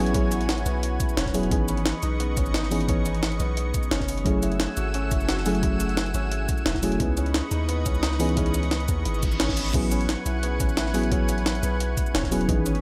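Soulful and lush, this cut from a longer liquid drum and bass piece moves at 175 BPM in a straight 4/4 feel, drifting through rich chords from Amaj13 to C#m9/G#, F#m9 and C#m9 before returning to Amaj13 at 9.7 seconds. A mellow FM electric piano carries the accompaniment with a round, full-bodied, dark tone and a noise layer, softened by chorus and tape echo, while a felt-muted upright piano adds intimate arpeggios through a delay. Behind them a thick, detuned unison pad holds bright sustained chords with slow attack and chorus, breathing with sidechain pumping. Underneath, a deep 808-style sine bass sustains long, decaying notes. The drums are sampler-style, compressed and pitched up: a thumpy, gritty electronic kick re-recorded in a large room, and an up-front jungle kit with a high-tuned snare, hi-hat, shaker and crash cymbal carrying a tape-warm character. An electronic reverse cymbal rises in at 9.2 seconds to lead into the closing chord, all set in a light reverb.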